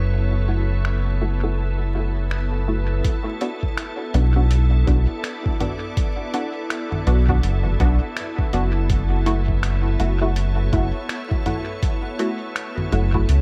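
A detuned, organ-like pad with ensemble chorus and reverb opens this meditative, hazy ambient dub excerpt at 82 BPM, over a round, deep analog bass sitting up front and a glassy, drifting-overtone texture that ends at 3.1 seconds. Muted, mellow filtered chord stabs soaked in dub echo arrive at 0.5 seconds, then a muffled, pitched-down sampler kit of congas, finger snaps and hi-hat swings lightly on sixteenths, overdriven and sent into a small room and dub echo. An overdriven, thumpy electronic kick joins at 3.0 seconds as the harmony moves from F#m7 to Bm and back, all wrapped in an echo-heavy mix with vinyl crackle.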